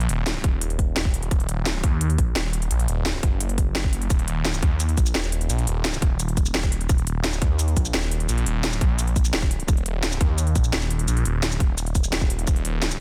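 Dark technical drum and bass at 172 BPM in Eb minor, this tense, mechanical excerpt is built on a thick, swirling detuned saw bass, saturated and phased, sitting up front and pumping against the sidechain from Eb1 to Eb2. A tight, layered electronic kick arrives at 0.4 seconds and runs to 12.5 seconds, while the kit's cracking snare, crisp hats and shaker carry a tape-warm edge in a small room. The digital ambience and dense, heavily limited modern master keep the whole fragment pressed close and hard.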